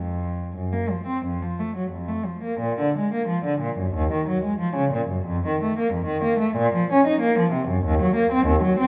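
A single bowed cello with a nasal, reedy gut-string tone sits up front in a wet recital-hall reverb, playing a grave yet flowing baroque-style suite movement in free, rubato time, ranging from Eb2 to Eb4 across this brief 8.9-second cut from a longer piece, shifting into a new section at 2.6 seconds.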